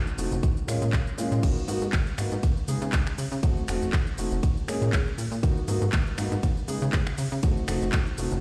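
Filtered disco house at 120 BPM in G# dorian, nostalgic and groovy, with a 55% swing on the sixteenths. A plucky analog bass with a fast, decaying filter pluck and funky sawtooth bite pumps under the sidechain from the start, joined by a dark, mellow concert grand piano through a phaser moving over A#m7, G#m9, C#sus2 and F7b9, while a punchy, up-front electronic kick enters at 0.4 seconds. A layered house kit of cabasa, snaps, handclaps, crash, ride and metallic hats carries a tape-warm, small-room color, all set in a bare stone room's light reverb as if heard on a big sound system, in a short cut from a longer piece.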